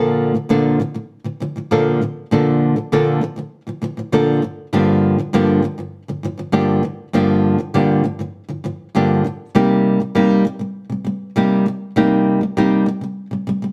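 A moderate studio reverb gives this short recording a sense of space, with a single nylon-string guitar sitting up front in the mix. It's a carefree, sunny pop piece in a straight four, played by that acoustic guitar alone from start to finish over about 13.7 seconds. The fingerpicked tone is warm and small, giving the performance an intimate, relaxed character across a range from G2 to A4. The harmony moves gently from Bbmaj7 to Gm7 at 4.4 seconds and then to Cm7 at 9.5 seconds, keeping the mood light and easygoing. Cut from a longer piece, the passage feels like a breezy stretch of a song already underway.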